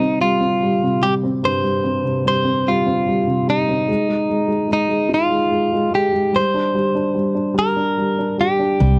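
Pop in C minor, melancholic and dramatic at a slow 49 BPM in 6/8, where a clean, compressed, direct-recorded electric guitar carries the melody over a dark, woody upright piano with audible action noise and a slight detuning, moving through C5, Ab5 and Gm, before a full-bodied picked jumbo acoustic guitar and a round, foam-muted vintage electric bass enter at 8.8 s, the bass sitting loudest, captured as a dry, close 1970s-style small-room recording.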